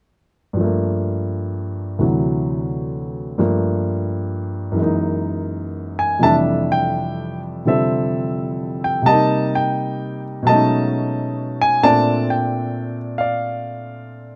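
Solo jazz at 86 BPM in F major, this swinging, warm passage from a longer piece is played on a lone baby grand piano that sounds polished and present, placed up front in a close, detailed recording with little reverb. The pianist moves with a loose, rubato swing through rich extended harmonies, opening on Gm9 and D9 before the second section arrives at 6.2 seconds on a lush Fmaj13. The phrase then winds through Cm7 and B13 to settle on Bbmaj9, ending at 14.4 seconds.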